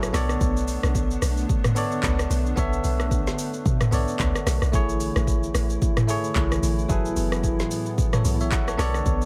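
Dry and close, this short amapiano excerpt carries a warm, soulful mood with a gentle swing on the sixteenth notes. An electronic afro-pop drum kit sits up front, its overdriven sound re-recorded in a small room; it combines a deep kick, woody snare, metallic hi-hats, handclaps, rim clicks, shaker and toms. Beneath it, the log drum bass is round, dark and percussive, with a fast attack, a decaying tail and a noise layer in its tone. A bright, clean, bell-like tine electric piano plays the accompaniment from start to finish, while a hollow, flute-like pad holds soft, detuned, warbling chords thickened by ensemble chorus. The harmony moves from Bm9 to Amaj7 at 4.7 seconds and settles on F#m11 at 6.9 seconds.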